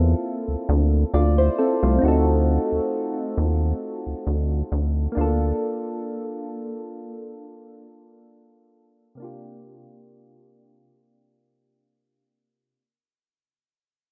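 Lightly reverberant and fading out across its 12.8 seconds, this excerpt of contemporary R&B drifts at 67 BPM with a gentle sixteenth-note swing and a late-night, longing mood. Soft, round electric-piano-like synth keys carry the accompaniment throughout, shimmering through chorus and phaser under a filter sweep as the harmony moves from Dm7 through D7b9 and Bbmaj7/D to C9sus4. A rubbery, hollow square-wave bass with a resonant pluck sits up front beneath them until it drops out at 5.5 seconds.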